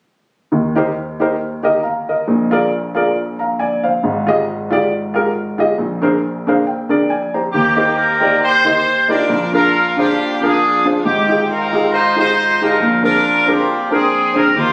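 Gospel in Eb major at 137 BPM, with a light swing on the eighth notes and a jubilant, hopeful mood, cut from a longer piece. An upright piano carries the accompaniment from the start, its woody, slightly detuned tone and short sustain sitting up front as it works through a cycle of Eb6, Bb7, Fm9/Ab and Bb9. The piano plays a fill from 6.2 to 7.5 seconds, leading into the second section, where a clear horn section enters with the melody at 7.5 seconds. The horns play as a pop-style ensemble with vibrato and a slapback echo, sounding distant and roomy. An echo chamber reverb of moderate size gives the recording a live, phone-in-the-room character, and both parts play through to the close at 14.7 seconds.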